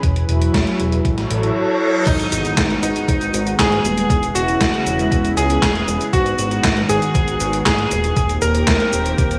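Synthwave in 4/4 with a driving, moody feel, where a lush, warbling pad with chorus and a fat, detuned analog bass both pump against an overdriven, thumpy electronic kick and an up-front gated 80s drum machine of snare, handclaps, hi-hat, cabasa and crash, while a reverse cymbal rises into an impact at 2.1 seconds as a cutting electric grand piano melody with digital delay enters alongside an airy, dreamy lead with vibrato and cassette tape coloring in the background, all in a moderate scoring-stage reverb.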